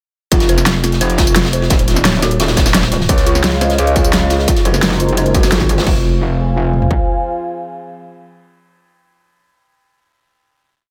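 A straight 4/4 groove at 173 BPM drives this short, dark and aggressive technical drum and bass piece in F phrygian, built on a distorted, tape-warm dubstep kick and toms, an up-front dubstep kit with a huge snare, bright hats, tambourine and crash, and a gritty, rolled-off looped breakbeat with edits sitting in the background. Through the drop from 0.3 s, a metallic, overdriven FM wobble bass pumps beneath an eerie, inharmonic synth bell whose 6-step arpeggio loop drifts against the bar through chorus, phaser, 12-bit sampler grit and digital delay, with a band accent at 5.5 s. A moody, detuned analog pad enters at 3.1 s and carries the final Fm chord from 5.9 s under light reverb.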